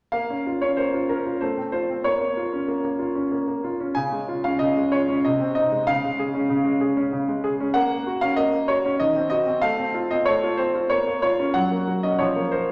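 This classical-period piano sonatina in B-flat minor moves at 94 BPM in 3/4, with a rubato feel and a dramatic yet elegant mood. A solo grand piano plays throughout, from 0.1 to 12.7 seconds, spanning C3 to Ab5 and tuned to A4 = 441 Hz. Its tone is clear and smooth with a vintage character and short sustain, and it sits up front in the sound. A wet recital-hall reverb with a 1.5-second decay surrounds the instrument. The harmony opens on Bbm and F/A, turns toward Db and Ab/C, then passes through Gb/Bb, Cdim/Eb and F/A before coming back to Bbm and closing on Bbm/F, as the passage is cut from a longer piece.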